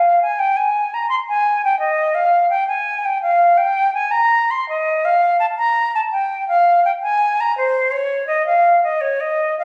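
A silver concert flute plays alone, its airy, metallic tone shaded with vibrato and tongued notes, moving between C5 and C6 for the full 9.6 seconds of this fragment cut from a longer piece. It is a grave, solemn baroque-style fantasia in free, rubato time, with the flute sounding both up front and distant. The phone recording, made in the room, carries a wet recital hall reverb, club reverb and compression.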